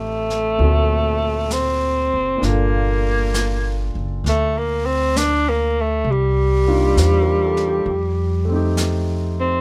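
Jazz ballad excerpt at 66 BPM with a gentle swing, tender and intimate, where a breathy tenor saxophone with vibrato carries the melody up front over a concert grand piano's natural, deep-bass accompaniment, a woody, thumpy pizzicato upright bass on gut strings, and an airy brushed drum kit on snare and hi-hat entering at 0.3 seconds, all in light reverb through close, detailed microphones as the chords move from Am7b5 and D7b13 to Gm9, Cm11 and F9.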